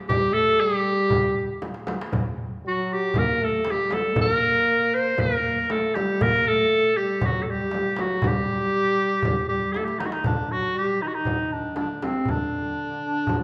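A steady, straight 4/4 pulse at 118 BPM comes from a crisp, metal-shelled darbuka played with soft hands alongside a deep, band-limited frame drum, with short drum fills at 1.6 and 9.7 seconds. Over this an Arabic maqam ensemble in G maqam nahawand unfolds a longing, soulful mood, cut from a longer piece. A bright, punchy clarinet carries the melody up front between C4 and C5, forceful and jazz-inflected with a light vibrato and a vintage edge. Beneath it a French horn plays a second line from C3 to Bb3, its warm, classical tone sitting distant and roomy with its own light vibrato. The recital hall reverb lends a wet, spacious bloom, and a new section begins at 10.2 seconds before the passage ends at 13.4 seconds.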